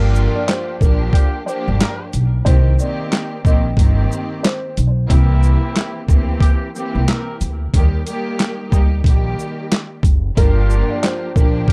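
A dark, slightly detuned upright piano melody opens this tough, reflective boom-bap hip-hop piece at 91 BPM, set over lush bowed strings, vintage jazz-style horn stabs and a woody, growly pizzicato upright bass. A gritty, pitched-down sampler drum kit of thumpy kick, snare, hi-hat, handclaps and shaker enters at 0.2 seconds with a swung sixteenth feel, while the chords move from Gm7 through Cm7 and C7 to Eb, and the piano, touched with delay, drops out at 4.7 seconds. The piano returns at 10.4 seconds alongside a very quiet, flute-like tonewheel organ on sustained chords, with the drums and bass up front in a dry, warm mix.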